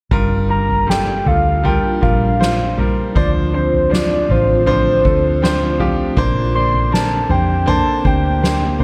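A soft, round synth lead with vibrato carries the melody from 0.5 seconds in this heartbroken, melancholic 80 BPM pop ballad, over a clear, up-front grand piano that adds a fill from 5.0 to 6.2 seconds, a dark, foam-muted electric bass, a soft-mallet drum kit with a boomy kick, and an ethereal, airy pad with ensemble chorus, phaser and reverb in the background, set in small room ambience as the chords move from Gm7 through Dm7 to Bbadd9.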